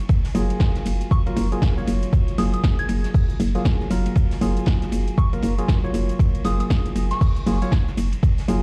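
Warm and sunny, this deep house excerpt sits at 118 BPM in 4/4 with a swung 16th feel, resting on a single F#maj9 chord in F# major. An up-front, overdriven electronic kick leads a layered drum bed: a deep house kit with a punchy snare, metallic hats and shaker, plus a darker, gritty breakbeat kit with a high-tuned snare whose smooth cymbals and hats pump. A hollow, bouncy FM bass and a percussive organ stab with chorus and tape echo both pump too, while a soft, pure synth bell with phaser and analog delay floats above from 1.1 to 7.6 seconds, all carrying a cassette-tape character.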